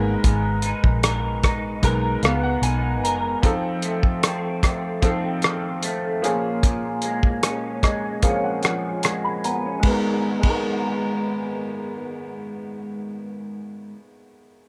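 A clear, woody upright piano with a worn, slightly detuned character accompanies this lonely, mellow bedroom-pop fragment at 75 BPM in G# dorian, adding fills over a filter sweep across the opening section. A twangy, slightly broken-up electric guitar through a small old amp carries ensemble chorus and warbly pitch drift, while a round, foam-muted vintage bass with tube saturation sits up front until 3.3 s. A cloth-damped, thuddy drum kit with dark cymbals and a tight kick plays until 10.7 s, all within a light studio reverb as the chords move from G#madd9 through F7 and A#m7 before returning home.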